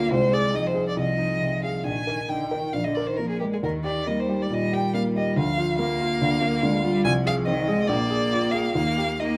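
A moderate studio reverb surrounds this quick, urgent and restless classical-period piano trio passage in Eb major at 138 BPM with a rubato feel, where an up-front, rich violin carries the melody with smooth, even vibrato, a focused, more distant bowed cello sings a second line, and a warm, present baby grand piano supplies the accompaniment, with the harmony moving through Bb7 to settle on Eb at 8.8 seconds.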